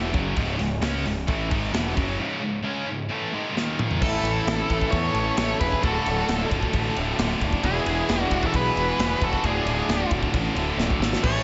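A punchy, overdriven fuzz bass sits up front in this epic, aggressive heavy metal excerpt at 133 BPM in 4/4, driving beneath two high-gain rhythm guitars with slapback echo, one of them scooped, and a polished studio drum kit with bright cymbals and a punchy kick. After a drum fill at 3.6 seconds, the harmony moves from C#m to A, D and E, and at 4.0 seconds a distorted lead guitar takes the melody, joined by a smoother overdriven second line in the background and a very quiet, distant chamber string section holding earthy, bowed chords with light vibrato. The whole mix carries a big arena sound in a moderate recital-hall reverb.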